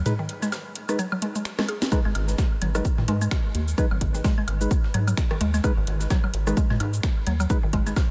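A rubbery square bass opens this minimal techno excerpt, its dark, bouncy tone pumping under sidechain from the first moment. A percussive organ stab, a mallet-like synth pluck and three drum kits join almost at once in a kick-free break. The organ stab is decaying and full-bodied, bathed in chorus and a diffuse ambient delay, while the woody, nasal pluck carries the riff through the same chorus and delay, with sidechain pumping. Percussion comes from three sources: a house kit with cracking snare, metallic hats, finger snaps and shaker; a booming analog drum machine of claves, rim click, toms and woodblock, re-recorded in a small room and given its own diffuse ambient delay; and a gritty, pitched-up breakbeat kit sitting in the background with high-passed hats and snare. A drum fill at 1.6 seconds leads into the punchy, up-front electronic kick at 1.9 seconds, anchoring the swung groove over a single G# minor chord. 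The mood is clinical and hypnotic, with a tape-tinged sheen on the drum kits and light reverb over the mix.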